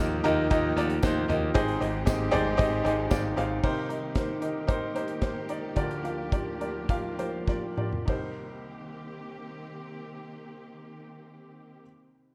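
A dreamy, reverb-soaked mix frames this dramatic, bittersweet piano-driven pop passage, cut from a longer piece, with a soft, felt-muted upright piano up front, its action noise audible, over lush strings with vibrato and portamento in the background. A bright, growly picked electric bass plays only until 3.6 s, while an acoustic drum kit with a tight kick, dark cymbals and a rolled-off top carries on to 8.2 s, and a jingly, distant tambourine adds brief color. The piano slips in a short fill before the middle stretch slows down, and a drum fill at 7.5 s leads into the closing chords.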